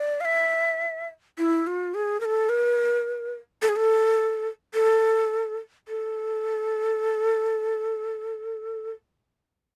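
Persian music in the chahargah mode on A, passionate and festive at 106 BPM in a straight 4/4, heard as a short cut from a longer piece where a solo ney plays alone from 0.0 to 8.9 seconds between E4 and F5, its breathy, reedy cane tone close-miked and up front with vibrato, tongued notes and an unsteady edge, set in light reverb within a dry, close 1970s-style studio sound, the music shifting to a new section at 5.9 seconds.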